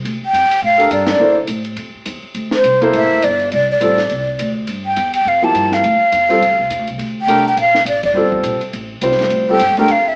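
Searching and intense, this swung modal jazz excerpt puts a breathy, hollow concert flute up front over a woody, thumpy pizzicato upright bass, a dark, smooth cocktail drum kit with a punchy kick and high-tuned snare, and a warm baby grand piano accompanying on a G9sus4 chord, with the band hitting accents at 1.1 and 8.0 seconds inside a reverb-soaked, distant room that carries an AM radio tinge.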